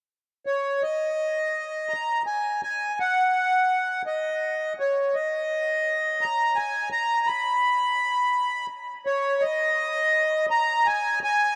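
Soaring and euphoric, this brief rock excerpt in 6/8 at 56 BPM features a reedy, airy accordion carrying the melody up front from 0.5 to 11.6 seconds, its slow beating tone treated with digital delay and light reverb in a dark production.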